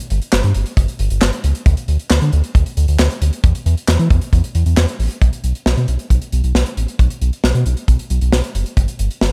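A round, wave-folded analog bass with a fast attack and dark, decaying tone drives this bright, upbeat synth-pop excerpt at 135 BPM in straight 4/4, sitting up front beside a modern studio drum kit of punchy kick, medium-tuned snare, hi-hat and handclaps, both playing from 0.1 to 9.3 seconds in a dry mix as the music moves into a new section at 5.2 seconds.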